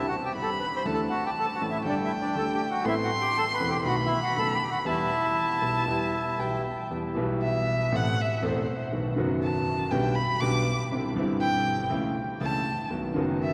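A rubato 4/4 tango at 120 BPM in E minor, this dramatic, sultry fragment of a longer piece sets a reedy, dark bandoneon melody over a clear concert grand piano accompaniment with deep bass, while a close, expressive bowed violin carries a second line with vibrato and portamento until the bandoneon stops at 6.6 seconds and the violin takes a solo from 6.9 seconds, all bathed in a long, wet cathedral reverb.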